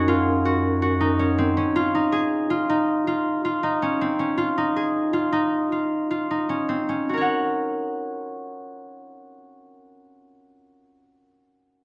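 Shimmering and playful, this contemporary instrumental piece in 7/4 has a bright, ringing concert harp up front, fingerpicking arpeggios from start to finish, while a distant, vibrato-laden bass clarinet sounds a low Gb in a jazz style before dropping out at 1.7 seconds. The pace slows between 4.0 and 7.1 seconds, where the music settles onto a new section. A moderate recital hall reverb wraps the dark, warm production.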